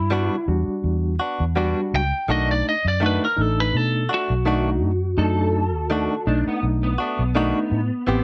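Blues in a soulful, mournful swing, cut from a longer piece, in which a twangy, slightly broken-up lead guitar with slapback echo carries the melody until 6.2 s over a dark, round, foam-muted bass, a reedy electric piano with fast tremolo, and clean, direct-recorded guitar stabs, while a lo-fi second guitar through a small old amp with ensemble chorus enters at 5.2 s, all moving from Em9 to B7#9 in light reverb.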